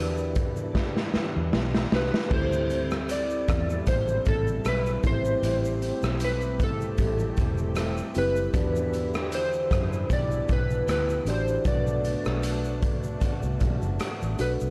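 Indie pop with a bedroom-pop haze, this wistful passage is cut from a longer piece and sways with a light swing on the sixteenths. An electric slide guitar, played with fingerpicks and slightly broken up, carries the melody through analog chorus and delay. Underneath, an electric guitar through a small old amp sits in the background, picked and compressed, its lush chorus and warbly pitch drift adding wobble, while a mellow tine electric piano plays through built-in speakers with a cassette-tape tint. A detuned sawtooth pad with a soft attack holds sustained chords, and a vintage foam-muted fingered bass gives a round, dark low end. The raw garage drum kit enters at 0.2 s, up front and saturated in a bright stone room with a punchy kick and rolled-off top, adding hi-hat, shaker, rim click, snare and crash, with a fill from 0.8 to 2.3 s. The harmony moves from Em7 through D9sus4 and Am7 back to Em7 before settling on Bm7, all captured in a dry, gritty hardware recording with studio reverb.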